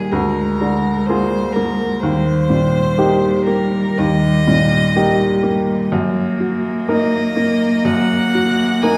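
A piano trio opens together at once on a Bb7/D chord: a bright baby grand piano sits up front with a brilliant, natural tone, supporting a bowed violin melody and a close, bowed cello line below it. This is a slow, romantic classical movement at 62 BPM in 4/4, played with rubato and tuned to A4 = 438 Hz, and its mood is warm and lyrical. The solo violin sings its melody between Ab4 and Ab5 with a rich, smooth, even tone and vibrato, while the single cello carries a second line between G3 and Bb3, equally smooth and even with vibrato of its own. The piano accompaniment spans D2 to Bb4 and stands as the loudest of the three parts, moving from Bb7/D to Eb at 2.0 seconds and on to Ebm/Gb at 5.9 seconds. A wet recital hall reverb with a 1.7-second decay places the listener further back in the room, and this short excerpt of about nine seconds is cut from a longer piece.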